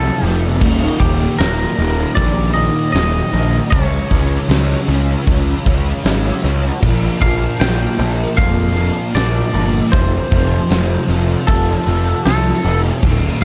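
A thick, double-tracked fuzz guitar sits up front, its distorted, picked riff thickened by ensemble chorus and giving this excerpt from a longer shoegaze and dream pop rock piece its hazy, dreamy weight. Beneath it, a fuzzy picked electric bass hits with bright, punchy overdrive, sitting just as far forward in the mix. A huge arena drum kit comes in at 0.2 s, with a fat snare, punchy kick, crash cymbal and hi-hat ringing through a big room sound. Above the wall of fuzz, a clean, compressed, twangy electric guitar carries the melody through tape echo. The harmony moves from F through Eb5, Db5 and Bb6 before returning to F at 9.9 s, all within a single straight, steady section wrapped in small room ambience.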